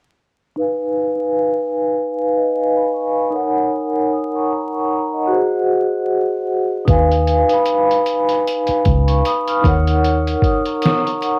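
A mellow, ringing vibraphone played with soft mallets provides the accompaniment in this melancholic, reflective lo-fi hip hop excerpt at 76 BPM in 4/4 with a lazy 16th-note swing, its slow motor vibrato and airy tone sitting up front through cassette-tape coloring and a low-pass filter sweep that runs from 0.6 to 11.4 seconds. The vibraphone carries the harmony alone at first, moving through Db9/Eb, Ebm7 and Ab7 chords. At 6.9 seconds a sampler-style drum kit arrives, pitched down and muffled, with a thumpy kick, a medium-tuned snare and hi-hat, compressed and tape-softened as if re-recorded in a small room. A dark, round, foam-muted fingered electric bass enters at the same moment, holding a low register before dropping out at 10.3 seconds. Vinyl crackle and a moderate booth ambience give the whole passage the intimate haze of a home cassette recording.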